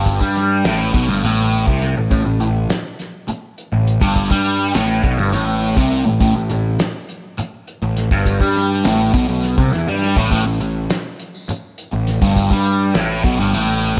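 Dark and trippy, this short cut from a longer psychedelic rock piece moves at 205 BPM in an odd 7/8 metre with a straight feel, centred in A minor. A double-tracked fuzz guitar carries the riff up front, its distorted, compressed tone coloured by phaser. Beneath it, a picked electric bass adds a round, punchy growl, overdriven and fuzzy with a dark edge. A cloth-damped acoustic drum kit thuds along on hi-hat, kick and snare, with a fat snare, a tight kick and a rolled-off top sitting close in a small room. A bright, jingly tambourine joins in the background at 10.3 seconds. Light small-room reverb gives the whole a compact, close sound.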